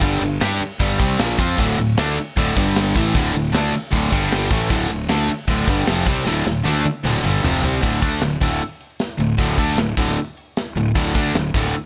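Hard rock in D minor at 154 BPM, this driving, heavy excerpt from a longer piece pairs an up-front distorted electric guitar with a crunchy overdriven guitar set in the background, both playing riffs over chords moving between G5, D5 and Dm, while a growly fuzz fingered electric bass with overdrive holds down the low end. A tight metal drum kit with bright cymbals, a medium-tuned snare and a tight kick sits up front in a studio room, and a drum fill from 6.3 to 7.8 seconds leads into a new section that settles on D5.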